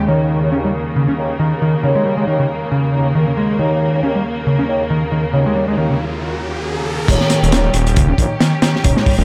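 Breakbeat with a swaggering, funky edge, this short excerpt opens on a rich, distant symphonic string section holding sustained chords, its bowed tone carrying light vibrato under vintage 12-bit sampler grit and sidechain pumping. An overdriven picked electric bass plays a round, dark riff through the same grit plus delay, while a mellow, tight brass ensemble adds classical-style stabs softened by a low-pass filter and echoed with delay. An electronic riser enters at 5.3 seconds, and a brief break follows before the drop lands at 7.1 seconds. There a thick, menacing detuned saw bass arrives up front, beating and tube-saturated, alongside a crunchy breakbeat kit of punchy kick, medium-tuned snare, hi-hat and dark crash cymbal with a gritty, rolled-off top and small-room feel. The 16th notes carry a gentle swing, and a light reverb sits over the mix.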